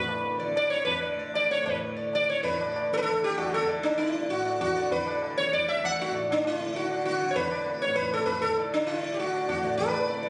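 A straight 4/4 pulse at 195 BPM drives this Hindustani classical passage in D raga bilaval, and the tempo keeps speeding up through its 10.3 seconds, giving it a devotional, radiant lift. Up front, the sitar carries the melody between D4 and F#5 with a round, plectrum-plucked tone, its buzzing attack and sympathetic strings leaving a shimmering halo. Beneath it, the tanpura holds a softly plucked drone from D2 to D3, bright and buzzing, while the low-tuned tabla joins at 0.1 seconds with short-ringing strokes that sound as if they were caught in a small room. The music moves into a new section at 2.4 seconds. Captured on a phone in a concert hall with a moderate 2.3-second reverb plus added studio reverb, the sound is dull at the top, and the clip is clearly cut from a longer performance.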